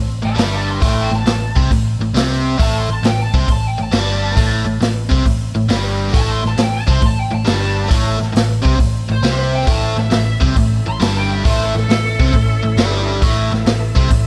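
A dry, up-front mix carries this raunchy, swaggering blues rock and southern rock excerpt at 136 BPM with a swung 4/4 feel, as a biting, double-tracked overdriven rhythm guitar riff and a dark, round, foam-muted picked bass drive beneath punchy kick, snare and hi-hat from a natural small-room vintage kit, while a lead guitar through a small cranked amp solos with wah and overdrive throughout and a gritty tonewheel organ on slow rotary speaker and chorus vibrato slips in behind with thick sustained chords at 9.6 seconds.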